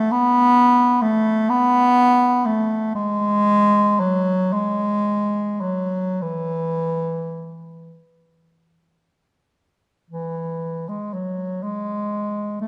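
Set in a moderately reverberant recital hall, this brief classical fragment from a longer piece features a clear, up-front bass clarinet playing alone in a free, rubato 6/8 at a very slow 23-45 BPM, its lonely, yearning lines staying in a low register before moving into a new section at 10.1 seconds.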